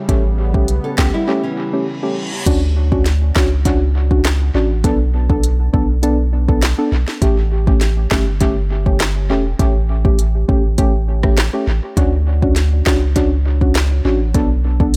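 Sultry and tough, this dancehall excerpt in straight 4/4 rides on an up-front electronic drum kit with a deep kick, sharp snare, smooth hats, handclaps and rim clicks, a punchy sine sub bass with a pitch-drop attack, and soft, nasal, full-bodied chord stabs drenched in chorus and tape echo. A detuned sawtooth pad opens the piece and a small fingerpicked nylon-string guitar joins at 0.8 seconds, before a break with a reverse cymbal at 1.9 seconds leads into the main section at 2.5 seconds, all in a dry, echo-heavy mix.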